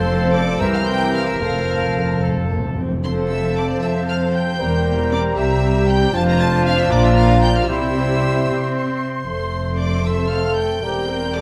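A full symphony orchestra begins together on an F major chord in this spirited, graceful fragment of a quick classical-period movement, set in 6/8 at 77 dotted-quarter beats per minute with a rubato feel. A chamber violin section carries the melody high above, bowed sul tasto with light vibrato and a soft attack. A darker violin section, a pure-toned flute section and a background clarinet add second lines. Beneath them a mellow solo bassoon and a background viola section supply the accompaniment, a distant, roomy French horn section holds sustained chords, and a dark cello section and a warm double bass section anchor the bass. A clear trumpet section adds loose stabs until 2.8 s, and round, very quiet timpani on soft mallets play a fill that closes at 3.0 s, where a new section begins. The harmony passes through Bb and C chords and back to F, set in a moderate recital-hall reverb.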